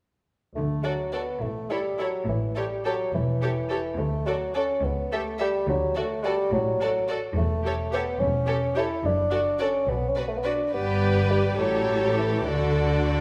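Cellos and double basses open this lively, spirited excerpt from a quick classical-period movement for symphony orchestra at 0.5 s, joined by a mellow, up-front solo bassoon and then by the violins and violas at 0.8 s, all moving in a rubato 6/8 at 71 dotted-quarter beats per minute in D major. The melody sits in a soft, intimate violin section played sul tasto with light vibrato, over a focused second violin line, lush, smooth violas, and expressive, distant low strings. The harmony circles between D and A7 before touching Bm and G on its way back home, all bathed in the reverberant air of a recital hall.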